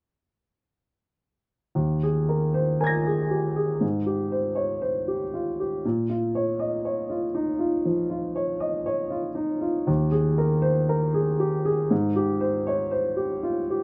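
A concert grand piano, boxy in tone with deep bass and short sustain, sits up front and plays alone from 1.8 to 13.8 seconds in this wistful, melancholic neoclassical minimalist fragment from a longer piece, moving freely in rubato over 4/4. Its harmony drifts through Ebsus4, Abmaj7 and Bbm before returning to Ebsus4 and Abmaj7. Tuned to A4 = 435 Hz and recorded outdoors, the sound is dry and close, with little reverb.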